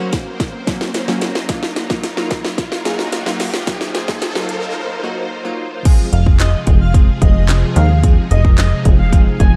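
A straight 4/4 house pulse at 110 BPM drives this energetic dance-pop excerpt, where a punchy, up-front drum kit with cracking snare, metallic hats and handclaps runs a fill under a build-up of pumping, crisp wavetable chord stabs, chorused vintage string-machine violas and a background riser over Gb and Ebmadd9, before the drop at 5.9 seconds lands on Fm and, from 6.1 seconds, a funky, nasal analog bass and an airy, dreamy lead with vibrato and dub echo join, all within a dark, warm production.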